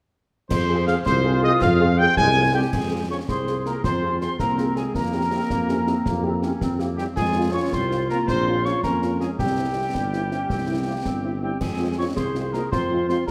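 A resolute, stern military-style march for wind band in F minor, cut from a longer piece at 108 BPM in 6/8. A mellow trumpet section carries the melody over a woody, distant piccolo and a tight woodwind section, with a dark French horn section in the background and an up-front tuba on bass. Concert snare, bright clash cymbals and bass drum sound close and dry, a bright trombone section holds chords from 1.1 to 2.3 seconds, and a smooth-topped euphonium joins at 2.5 seconds, all set in a wet scoring-stage reverb.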